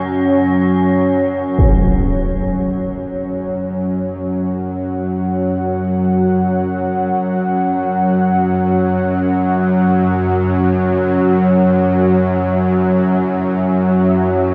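Vast and ominous, this dark ambient drone floats in free time, tuned slightly sharp to A4 = 441 Hz and resting on an F#5 chord. A deep, moody pad of detuned sawtooth voices with a sine sub octave holds sustained chords from F#3 to F#5, its slow attack and long release softened by chorus into a mellow bed. Beneath it, a tense, nasal bowed-like drone sits up front around F#2 to F#3, string-like and bright, with a noise layer and vibrato. An eerie, metallic FM drone on C#4 glints faintly at the outset until a huge, bright impact, dulled by a low-pass filter, strikes at 1.6 s. From there a filter sweep moves through the synth drone until the cut at 14.5 s, all of it soaked in an enormous, wet ambient reverb that lingers for nearly eight seconds.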